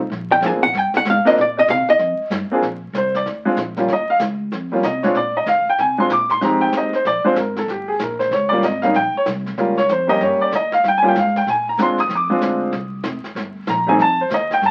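A woody pizzicato upright bass opens this playful small-group swing and bop excerpt at a brisk 190 BPM in Bb mixolydian, with a brushed drum kit and its boomy kick joining at once. A clean, compressed hollow-body archtop guitar steps up front for a short picked solo that ends by 2.3 seconds, while an open, up-front baby grand piano comps from 0.4 seconds onward over chords such as Bb9, Eb9 and Fm7. The whole thing sits in a small, reverberant room and carries the crackle of a very old 78 rpm record, giving it a warm, vintage glow.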